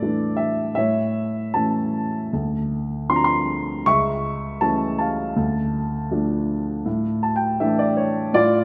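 Reflective and dark, this brief excerpt of lyrical classical solo piano unfolds with a rubato feel, its mellow, up-front grand piano moving from Asus4 through A, Dm7, A/C# and Dm before settling back on Asus4 at 6.9 seconds with a short fill lasting until 8.3 seconds, all set in a moderate concert-hall reverb.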